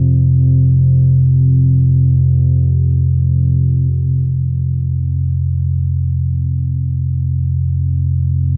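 A deep, rumbling drone plays alone from 0.0 to 8.6 s in this unsettling, ominous ambient fragment, its detuned, warbling tone sitting dark and up front between F2 and C3 with a slow attack and long release, shifting into a new section at 3.9 s while a vast cathedral reverb and a dulled top end wash over it.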